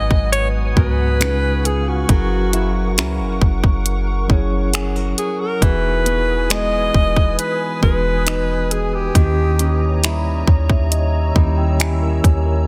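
Late-night and sensual, this contemporary R&B excerpt sets a breathy, close-miked alto saxophone with vibrato and tape echo over mellow tine electric piano, a glassy, warbling FM pad with ensemble chorus and built-in reverb, fingerpicked nylon-string guitar arpeggios with tape echo, a deep, round 808-style bass and an overdriven, up-front trap kit of finger snaps, bright hi-hats and a hard-clipped kick, with the saxophone dropping out at 10.3 seconds as the electric piano takes a fill to the close, all within a dense, heavily limited modern master.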